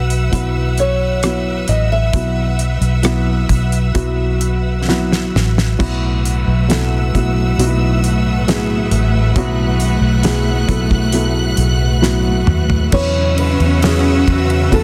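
A round, foam-muted electric bass sits up front in this emotional, hopeful pop ballad at 67 BPM, anchoring a felt-muted upright piano with a mellow, intimate tone and a clear, bowed string section holding sustained chords high above. A boxy, fingerpicked nylon-string guitar carries the melody until 4.8 seconds and returns at 12.9 seconds, while a damped drum kit with a fat, softly clipped snare and dark cymbals plays fills leading into new sections. From 5.8 seconds a lush cello section with digital delay adds a second line in the background, all in a dry, dense, heavily limited mix cut from a longer piece.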